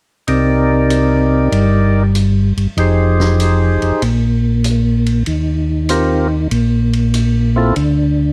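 The sound is dark and close, with little reverb, and the two organs sit up front in a dry, intimate space. This bluesy, smoky soul jazz organ trio swings at 96 BPM in 4/4, in C minor, in a short section cut from a longer piece. A tonewheel organ carries the bass line, louder than the other parts, with a smooth, clean tone colored by chorus vibrato and a slow rotary speaker. Above it, a full-bodied percussive tonewheel organ plays the melody from 0.3 to 7.8 seconds, its second-harmonic percussion and key click giving each note a crisp attack through its own slow rotary speaker. A vintage acoustic drum kit sits low in the mix on hi-hat, ride cymbal and a fat snare, with a natural studio-room sound and a rolled-off top. The harmony moves through Cm7, Fm7 and Eb6 with brief chordless breaks, and the bass organ is the last part sounding, until 8.3 seconds.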